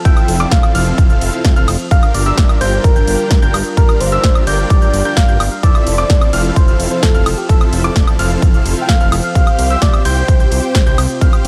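A round, keys-like synth lead carrying the melody with chorus and dub echo opens this euphoric, triumphant festival progressive house excerpt at 129 BPM in F major, over a lush, warbling unison pad that pumps with the sidechain in the background. From 0.1 seconds a huge detuned supersaw riff, a fat analog bass and a dark, mellow grand piano playing high arpeggios with dub echo join in, all pumping against a punchy, up-front electronic kick and a big-room kit of crisp hats, snare, ride and woodblock. The chords move from Fmaj7 to Gm7 and back before resting on Csus4, in a dark, dry production.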